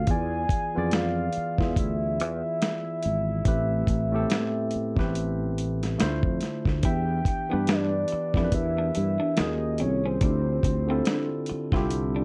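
A dusty, gritty sampler-style drum kit with a thumpy kick and a growly, punchy fretless electric bass with analog chorus set a swung 16th-note feel together at 71 BPM in 4/4 in this sultry, smooth neo-soul and R&B excerpt. A barky, lightly overdriven tine electric piano plays the chords, moving from E7b9 through Dm9 and Ebm11 to Dm11, while a round, dark octave-layered synth lead with chorus and vibrato carries the melody. At 6.8 s a slightly broken-up electric guitar through a small old amp enters in the background with spring reverb, and the recording has a cassette tape character in a moderate studio room.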